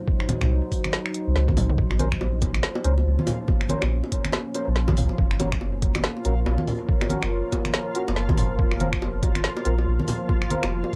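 The soft, round dub sub bass sits up front in this dark, meditative deep dubstep excerpt in Bb minor, moving at 141 BPM with a swung, half-time feel, beneath a moody detuned sawtooth pad with chorus and reverb that holds chords from Cdim through Bbmadd9, Gb and Fsus4. A muffled, thumpy pitched-down kick, a deep house kit of finger snaps, smooth hi-hats, woody snare and toms with a fill at 1.6 seconds, and hard-handed congas and bongos with dub echo fill out the groove. A hollow, nasal organ stab with dub echo enters at 2.0 seconds and a reversed, granular swelling texture at 2.7 seconds, all heard through light reverb and the character of a home cassette recording.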